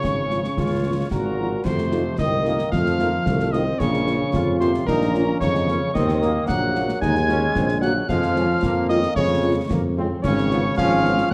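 Rousing and proud, this short excerpt from a military-style march for wind band moves in a straight two-beat metre. A mellow solo cornet carries the melody with a smooth top, while a clear, distant euphonium and a pure, expressive piccolo with vibrato and rolled-off highs each sing a second line. Beneath them, a warm, tight trombone section holds soft-attack sustained chords in the background, and a very quiet, close-miked French horn section adds accompaniment from 0.3 to 11.1 seconds. The mellow tuba sits up front on the bass, roomy in tone, and the close, dry concert snare, bass drum and clash cymbals drive the march with bright cymbals. The harmony passes through minor and seventh chords and closes on a seventh chord, all set in a wet recital hall with a dark, warm production.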